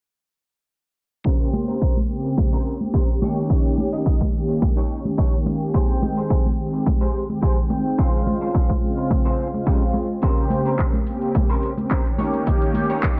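A smooth, detuned sawtooth analog pad sits up front with chorus, sidechain pumping and a filter sweep, carrying a sensual, sleek nu-disco groove built on a punchy, tape-warm electronic kick, close and dry congas in the background, a slightly broken-up picked electric guitar riff under ensemble chorus and delay, and a house kit of handclaps and hi-hats that enters at 10.2 seconds, all in a dry mix.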